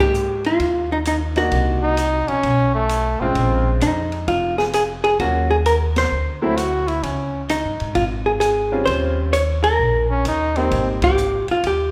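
Playful and relaxed, this short cut from a longer small-group swing and bop piece moves in a loose, swung 4/4 through a rich run of extended chords. The clean, compressed hollow-body guitar carries the melody up front from the first moment, picked with a warm, vintage tone. Beneath it, the upright piano comps with a brilliant, slightly detuned sound, its action noise audible, while the pizzicato upright bass sits forward with a woody, dark steel-string depth. The drum kit plays softly in the background, its dark cymbals, high-tuned snare and boomy kick heard on hi-hat, ride, snare and kick. Entering at 1.8 seconds, the trumpet adds a second line with a soft attack, light vibrato and scooped notes, and the band hits accents together at 5.9 and 10.9 seconds. A recital hall's moderate reverb gives the group an airy, concert-space glow.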